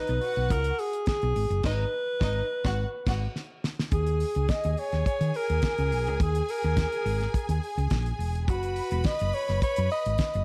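A breathy alto saxophone carries the melody from the very start, its close-miked, intimate tone marked by light vibrato and a soft attack, while a clear studio string section plays a lush, bowed second line alongside it. This joyful, celebratory disco cut moves at 105 BPM in a straight 4/4, with a round, hollow-body fingered electric bass and a damped 70s drum kit arriving almost at once. The bass sits up front with a dark, amped sound, and the dry, mid-forward drums bring a fat snare, tight kick, hi-hat, crash and dusky cymbals. The band hits a run of accents from 1.6 seconds as the harmony moves from C#9sus4 to G#m7, and a drum fill at 3.3 seconds leads into a new section at 3.9 seconds built on D#7sus4 and later F#sus4. Light reverb and small room ambience give the whole a warm, dark production, and the passage is cut from a longer piece.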